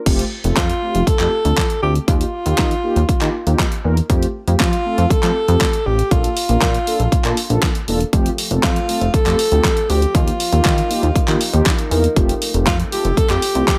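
A straight dance-pop groove sets the pace, driven by a punchy, layered electronic kit whose fat snare, handclaps, hi-hat, crash and kick sit up front with the faint air of a small room. Beneath it, a glossy, retro synth bass built from pulse and sawtooth waves pumps with sidechain compression, its chorused, sustained tone carrying a filter sweep and a mellow edge. A dark, round synth brass pad with detuned sawtooth, chorus and vibrato fills the chords, moving between F, E-flat and B-flat colours. From 0.6 seconds a breathy alto saxophone takes the melody in a whispered, intimate pop style, with scooped notes, soft attacks, vibrato and a trailing delay. At 8.1 seconds a very quiet, thumb-plucked concert harp adds ringing arpeggios, rounding out a summery, carefree passage cut from a longer piece and bathed in digital ambience.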